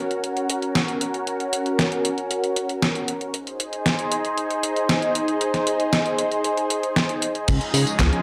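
Bittersweet and melodramatic, this short italo disco passage, cut from a longer piece, moves at a straight 116 BPM in 4/4. A lush, thick unison pad, bright and up front, holds sustained chords built from detuned sawtooth and square waves with a slow attack, coloured by chorus and phaser while a filter sweep runs across it. A clean 12-bit digital drum machine plays crash cymbal, handclaps, hi-hat, tambourine and a fat, sampler-style snare, all with a tape-tinged, electronic character and gated reverb. The harmony moves from Gb to Ab at 3.3 seconds, then settles on Dbadd9 at 7.5 seconds. Only at that last moment do a dry, dark, tight acoustic kick drum and a glossy, mellow chorused synth bass enter, the bass mixing pulse and sawtooth tones with a fast attack, a filter pluck and a touch of tube saturation. A moderate digital studio reverb surrounds the mix, with a faint mains hum beneath it.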